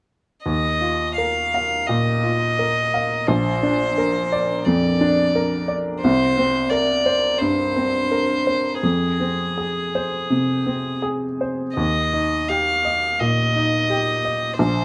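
A single bowed violin carries the melody, its soft attack and sul tasto tone giving it a pure, floating quality that sits between Ab4 and F5 and feels both close and faintly distant. This is a hopeful, tender neoclassical piece for piano and strings in Eb major, moving in a rubato 4/4 at around 81 to 88 BPM. The upright piano enters at 0.5 s as accompaniment, its clear, woody and natural sound marked by a short sustain and ranging from Bb1 up to F5. Both instruments sit up front, played live together in a small room whose moderate reverb lends an intimate sense of space. The harmony drifts from Ebsus2 through Bb, C5 and Fm before settling on Ebadd9 at 11.8 s, and the passage, cut from a longer piece, closes at 14.8 s.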